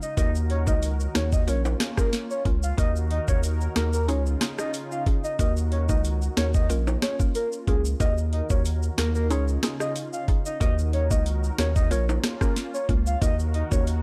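A soft, octave-layered synth lead with chorus, phaser and vibrato opens this tough, hypnotic dancehall excerpt, together with a smooth, detuned sawtooth pad that pumps under sidechain and a close, dry tube shaker and timbales played with hard hands. From 0.2 s a thick, saturated sine sub bass and an up-front, overdriven electronic drum kit join in, the kit bringing a knocking kick, sharp snare, rim click and metallic hats. A woody, mallet-like FM pluck, also treated with chorus and phaser, adds round, decaying accompaniment, all set in a dark digital ambience over a looping chord cycle in Eb minor.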